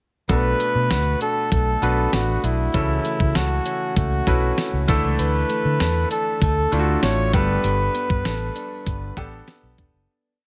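Flugelhorn, baby grand piano, clean electric guitar, muted bass and a 12-bit drum machine all enter together at 0.3 seconds in this moody, nostalgic 1980s-style pop piece in B minor at 98 BPM, with the close-miked flugelhorn carrying a motif-based melody of call phrases with vibrato, scooped notes and tube saturation over Bm7, F#m7/C#, Dsus2 and Gadd9. Up front, the drum machine's thumpy kick and fat snare give a big backbeat while the round, foam-muted bass plays a syncopated pop-funk line with slides, and the polished piano pushes close-voiced chords with grace notes. The bright, compressed guitar sits in the background with a fingerpicked roll pattern and subtle chorus, all in light reverb, before the whole short verse fades out from 7.6 seconds.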